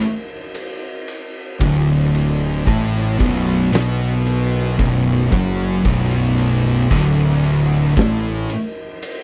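Ominous and heavy, this stoner and doom metal excerpt crawls at 56 BPM in B minor, held on a single Bm chord. An oversized low-tuned drum kit opens alone with a boomy kick, fat snare and dark ride cymbal in a bright, pumping stone room, gritty and saturated, before two thick distorted fuzz guitars enter at 1.6 seconds with a riff set back in the mix, one warmer and one darker. A fingered electric bass enters alongside them at the same moment, overdriven and growly with bright tube-saturated fuzz, and the strings drop out at 8.5 seconds while the drums carry on briefly in a dry sound.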